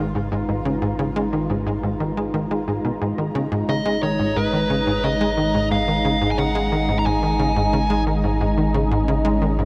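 A tight, punchy sequencer bass drives this cosmic, hypnotic piece of ambient space music, its nasal sawtooth-and-square riff sitting up front with a plucked filter edge and a touch of tape echo. Underneath, a deep, round sub bass holds a single low G# while a sweeping, resonant pad sustains a G#madd9 chord with bright, detuned shimmer, both fading in across the whole 9.7 seconds. In the background, a bubbling texture of random filter steps adds restless motion. At 3.7 seconds a dark, smooth electric lead guitar enters with an overdriven, picked melody and tape echo, carrying on until 8.0 seconds. Set at 89 BPM in a straight 4/4 in G# dorian, the music is bathed in a huge, wet ambient reverb, and this short section is cut from a longer piece.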